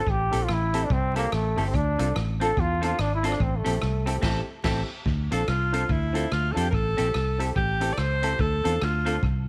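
A bright, vintage-toned trombone opens this energetic, driving ska excerpt in D minor at 144 BPM with a swung feel, playing a solo melody with light vibrato and scooped notes over a round, foam-muted dark electric bass, a clean hollow-body guitar, a woody, slightly detuned upright piano with short-sustained stabs tucked in the background, and a big-band drum kit with a punchy kick, a medium-tuned snare and tape echo. After a band accent at 4.2 seconds, an alto saxophone takes over the solo from 5.3 seconds, up front and singing with pop-style vibrato as the chords alternate between Am7 and Dm7. Light reverb and a layer of vinyl crackle lend the recording an aged sheen.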